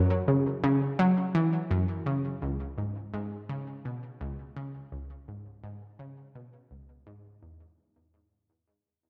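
A lone analog pluck, round and detuned with a sawtooth edge, a fast attack and a decaying filter tail, sits up front through chorus and tape echo in this expansive, hypnotic ambient fragment cut from a longer piece, its dark production bathed in a lingering plate reverb as the whole passage fades out over its 7.8 seconds.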